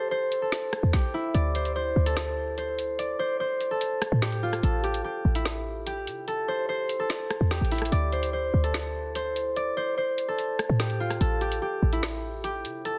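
A bright, fingerpicked concert harp rings out up front in this tense, cold half-time drill cut from a longer hip hop piece, joined at 0.3 seconds by an electronic kit with a hard-clipped kick, woody snare, rim clicks and metallic hats, and at 0.8 seconds by a punchy, tight 808-style bass whose decaying sine tone carries a noise layer, the mix sitting in light digital ambience with a dense, heavily limited modern master.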